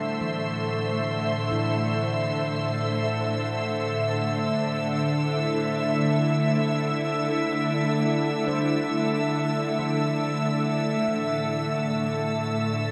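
A pure, full-bodied organ-like pad sits up front with sustained chords softened by ensemble chorus, moving from Am to Dmadd9 at 4.1 seconds and back to Am at 11.1 seconds in this reflective, spacious ambient fragment cut from a longer piece. Beneath it, a very quiet handpan plays ringing, mellow arpeggios that sound close and dry, while a tense, detuned string-like drone holds a single low note with vibrato in the background. The dreamy mix is soaked in a huge reverb with an 8.0-second tail.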